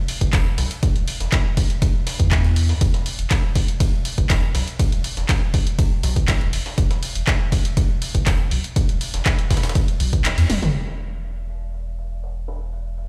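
A punchy analog kick sits up front in this trippy, hypnotic acid house cut from a longer piece, driving a straight 4/4 at 121 BPM through the opening drop. Beneath it, a deep, thick sub bass with a saturated triangle tone, fast attack and sustained notes ranging from D1 to E2 pumps against the sidechain. An analog drum machine adds handclaps, hi-hat and toms, while a quieter breakbeat sampler-style kit brings gritty, compressed, pitched-up hi-hat, ride and a medium-tuned snare, its filtered cymbals and hats pumping as well. At 10.2 seconds a band accent lands as the kick drops out, a drum fill follows at 10.5 seconds, and by 10.7 seconds the drum machine has stopped, leaving the bass and sampled kit to carry the closing section. The mix is fairly dry, heard as if through a big sound system in a bare stone room.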